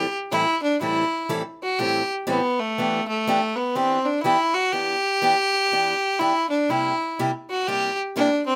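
Bittersweet and virtuosic, this brief jazz fragment in E minor swings at 122 BPM, moving from Am7 through Em7 to C7 across its 8.6 seconds. A clear, nasal violin carries the melody up front with light vibrato and an airy bow. A bright, boxy parlour-style steel-string guitar picks the accompaniment, its fresh strings and finger squeaks caught by close, detailed microphones in light reverb.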